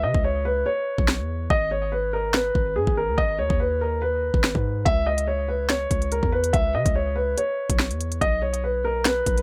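Drill hip hop at 143 BPM in a half-time 4/4 feel: a dark, tense cut from a longer piece, where a mellow, long-sustaining baby grand piano carries the melody through a low-pass filter and digital delay over C#m and G#m changes. A punchy, heavy sine-based 808-style bass with a noise layer, a fast attack and a decaying tail sits up front. An electronic drill kit enters at 0.1 s with knocking kick, sharp snare, crisp hi-hats and finger snaps, all under light reverb, with a break running until 4.9 s before the harmony returns to C#m and settles on B5.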